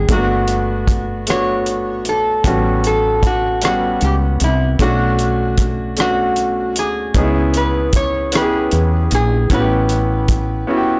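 A blown-out, overdriven recording with light reverb and a top end that stops at 7.8 kHz carries this slow, sultry and yearning six-eight R&B cut at 51 BPM, tuned to A4 = 435 Hz. A metallic, nasal resonator slide guitar played with fingerpicks sings the melody through plate reverb, over a clear, intimate baby grand piano with audible action noise, a dark, round fretless electric bass, and a cloth-damped, thuddy drum kit of hi-hat, tight kick and rim click, with soft clipping on the snare. The chords move from Gmaj7 through A13, Bm9 and C#m7 to A9, and the piano plays a brief fill in a silent gap at 10.7 seconds as the cut closes.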